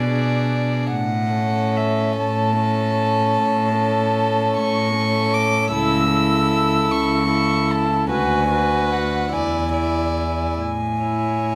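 Classical string quartet in a slow, rubato romantic movement, this lyrical excerpt sets a floating, pure first violin melody high above a close second violin line, an intimate viola accompaniment with light vibrato and airy bow, and a rich cello bass, all four players bowing sul tasto with soft attacks in a moderate recital hall reverb.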